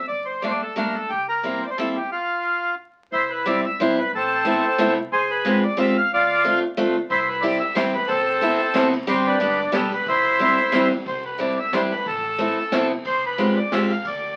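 A reedy, full accordion carries the melody up front in this charming, nostalgic musette waltz at 181 BPM in swung 3/4, settling into C major from 3.1 s, with a bright, fresh-stringed picked steel-string acoustic guitar picking out accompaniment close by, a woody pizzicato upright bass sitting in the background, and a dark, smooth brush drum kit with boomy kick, high-tuned snare and dusky ride cymbal joining softly at 7.1 s, all heard through a club reverb and the crackle of a very old 78 rpm record in a fragment cut from a longer piece.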